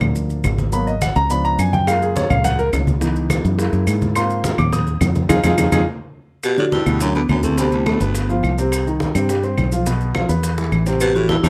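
A sunny, lively Afro-Cuban jazz excerpt at 210 BPM opens with a warm, up-front grand piano solo over punchy, foam-muted fingered electric bass, woody saturated claves, grainy close maracas and distant low-tuned congas, with tight high-tuned bongos joining at 1.9 s; after a band accent, the music settles into G major at 6.4 s, where a ringing, metallic vibraphone bathed in plate reverb carries the melody over a raspy, growling baritone saxophone second line in a lightly reverberant room.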